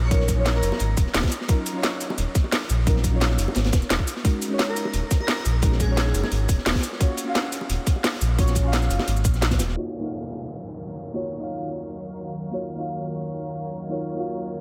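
Liquid drum and bass at 174 BPM in Eb minor, dreamy and melancholic, this excerpt opens on a drop where a deep, mellow chord stab with chorus, phaser and analog delay moves through Ebm9, Ab9sus4/Eb and Gbmaj7/Eb over a full, up-front sine sub bass with octave. A tight electronic kick, a garage kit with cracking snare, crisp hats and cabasa, a gritty, saturated breakbeat kit with a rolled-off top, and soft, low-tuned bongos in the background drive the groove, while an airy lead with vibrato and diffuse ambient delay drifts in briefly behind. At 9.8 seconds the filter sweep begins as a distant downlifter falls, the bass and most of the drums drop away, and a thick, detuned unison pad with sidechain pumping enters at 10.1 seconds, all set in light digital ambience.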